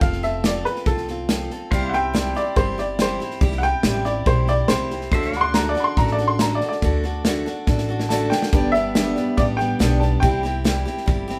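An upright piano with audible action noise takes a sparkling solo over picked jumbo acoustic guitar, thumpy gut-string upright bass, a punchy up-front country drum kit and twangy pedal steel chords at 141 BPM in G major, giving this heartfelt, nostalgic honky-tonk excerpt, cut from a longer piece, a woody, intimate glow until a drum fill at 7.7 seconds leads into a new section at 8.5 seconds, where the pedal steel stops.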